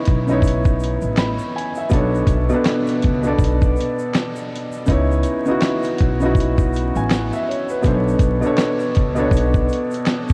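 A felt-muted upright piano opens at 0.0 seconds, soft and intimate with a thin-felt, mellow tone, sitting up front and colored by cassette tape and a low-pass filter as it moves between C#m9 and Bm9 chords. Almost at once a dusty soul sampler-style drum kit joins, compressed and gritty, with a thumpy kick, a fat snare, hi-hat and handclaps, also placed up front. Alongside it, a pizzicato upright bass with steel strings adds a woody, growly low end before dropping out at 9.7 seconds. An egg shaker enters at 0.3 seconds, grainy and bright in a small room, tucked in the background. This melancholic, reflective lo-fi hip hop excerpt moves at 81 BPM in 4/4 with a swung sixteenth feel, in C# phrygian. The whole mix is dreamy and soaked in a huge ambient reverb, with vinyl crackle running through it.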